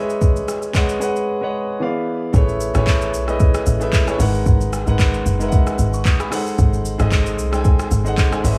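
A concert grand piano opens this late-night, soulful amapiano excerpt, its open, long-sustaining voicing sitting up front with a rich low end as it lays down a C#m9/G# chord. The drum kit joins at 0.1 seconds, an electronic, produced set of soft kick, metallic hi-hats, handclaps, rim clicks and shaker, re-recorded in a large room and placed prominently in the mix. At 113 BPM in 4/4 with a lightly swung sixteenth-note feel, the groove settles into G# phrygian, and a short break from 1.3 seconds leads through an E7b9 chord. The drop lands at 2.3 seconds with the entrance of the log drum bass, a deep, round, percussive FM tone with a noise layer, fast attack and dark decay. From there the harmony moves through Amaj9, G#m9 and G#7b9, while a digital ambience surrounds the track.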